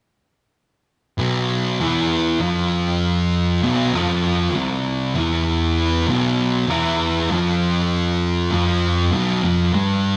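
Metal excerpt at 98 BPM in a straight 4/4, sludgy and ominous in mood. Two thick fuzz guitars, both distorted, picked and up front, play the riff together from 1.2 to 10.2 seconds, spanning B1 to G3, one guitar sounding warm and the other darker. The band plays live in one large studio room with moderate reverb, and the recording has nothing above 10.7 kHz.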